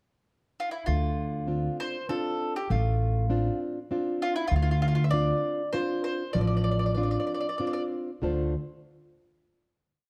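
A woody, double-strung mandolin sings wistful, passionate song phrases from 0.6 s over a fingerpicked nylon-string guitar's warm oompah of bass notes and chords and a dark pizzicato upright bass on root and fifth, forming a complete Italian folk serenade in D minor at 98 BPM in a swung 3/4 that settles on a final chord from 8.2 s in a moderate recital-hall reverb.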